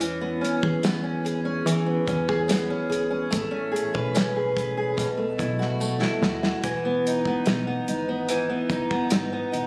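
A straight 4/4 groove from a damped 70s drum kit, with a tight kick and a dry snare sitting up front, anchors this dreamy, hazy indie and bedroom-pop excerpt, joined by a punchy, dark analog bass with a filter pluck and a fast attack. A picked steel-string acoustic guitar carries the accompaniment with audible finger squeaks, subtle chorus and a warbly pitch drift, while a jingly, distant tambourine sits in the background from 0.8 to 6.0 seconds. The harmony moves from E6 through Amaj9 and B7sus4, and a drum fill at 5.8 seconds leads into a new section that settles on Emaj7, all captured with an in-the-room phone quality and light reverb.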